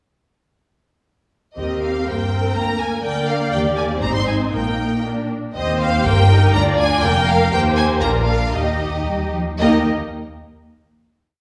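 Graceful and cheerful, this complete quick classical-period movement for string orchestra in Eb major moves at 111-127 BPM in a rubato 2/4, with a focused, up-front first violin section carrying the melody from 1.6 to 9.9 seconds over a smooth second violin counter-melody, a distant, expressive viola section adding inner lines and sustained chords, a cello section playing a walking bass that answers at phrase ends, and a double bass section doubling the bass line with pizzicato, the whole phrase stated twice before a final chord in a wet recital-hall reverb.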